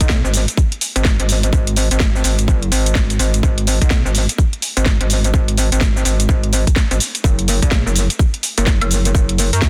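A metallic, saturated FM wobble bass, with chorus, overdrive and sidechain pumping, anchors this swaggering, gritty bass house excerpt beneath a tight, up-front electronic kick and a swung garage kit of cracking snare, warm hi-hats, cabasa and woodblock, in a dry, dense and heavily limited modern mix.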